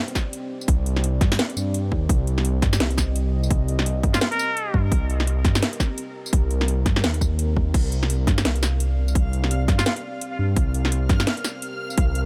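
A swung, half-time drum and bass groove drives this tense, heavy excerpt. It is built on an overdriven, hard-clipped electronic kick up front and a layered kit of cracking snare, metallic hi-hats, crash cymbal and tambourine with a tape-warm small-room character, while a rumbling, detuned sawtooth bass with tube saturation enters at 0.7 seconds. Beneath them a moody, chorused ambient pad holds sustained dark chords with sidechain pumping, a nasal, straight-muted trumpet plays a brief jazz-style phrase with vibrato, scooped notes and digital delay at 4.1 seconds, and from 8.4 seconds a reversed, granular swelling texture adds a dreamy, bright shimmer in its own reverb.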